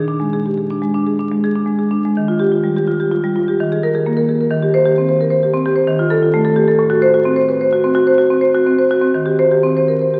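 In an uneven, rubato five-beat metre, this playful contemporary classical piece for solo marimba moves through chords such as Ebadd9, F9/Eb and Am6 before settling on Eb6 at 9.1 seconds. The marimba, played with medium mallets on rosewood bars, sounds woody and warm, sits up front and ranges from A2 to C5. A lingering church reverb surrounds it, and the crackle of a very old 78 rpm record gives this short excerpt an aged patina.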